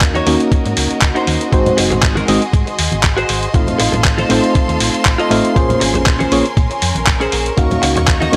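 A swung 119 BPM nu-disco groove in Bb minor, cut from a longer piece, rides on an up-front, thumpy electronic kick and a gritty, dusty soul-style kit with handclaps and hi-hat, soft-handed congas entering at 0.2 seconds in the background, and a round, punchy hollow-body bass pumping under a reedy electric piano with phaser and tape echo, a clean, scooped guitar riff bathed in lush chorus, and sustained chords from a rich, vibrato-laden violin section, moving through Ebm7, Ab7, F7/A and Bbm9 in a cosmic, sleek mood with a dry, gritty finish.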